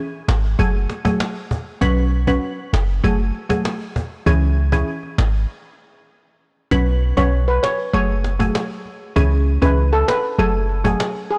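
A blown-out, overdriven recording with light reverb carries this sultry, bouncy dancehall cut at 98 BPM in F# minor, where a deep, boomy 808-style sine bass sits up front under a woody cajon with faint snares and vintage 12-bit grit. A glassy, crystalline wavetable pluck with chorus and a filter sweep plays chords like F#madd9, Bsus2 and C#m, and a short break arrives at 5.5 seconds. At 7.2 seconds a shimmering, metallic steel pan, played with soft rubber sticks and fed through tape echo, takes the melody until the fragment cuts off.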